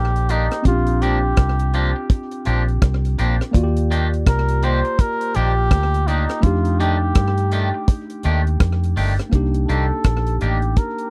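A dry, close 1970s-style studio sound frames this smooth, longing lovers rock reggae excerpt in C dorian, moving at 83 BPM in 4/4 with a swung sixteenth-note feel. A cup-muted trumpet carries the melody as a breathy, veiled solo from the start until 9.3 seconds, its close-miked, intimate tone trailed by tape echo. Beneath it, a worn, slightly out-of-tune tine electric piano comps through a phaser, while a clean, scooped electric guitar adds twangy stabs. The foam-muted fingered bass sits up front with a round, punchy, dark tone, alongside a deep acoustic drum kit of hi-hat, rim click and a tight kick. The harmony moves from a rootless Cm9 through Bb6, Ebmaj7 and F13 before returning to Cm9 at 9.3 seconds, where a new section begins.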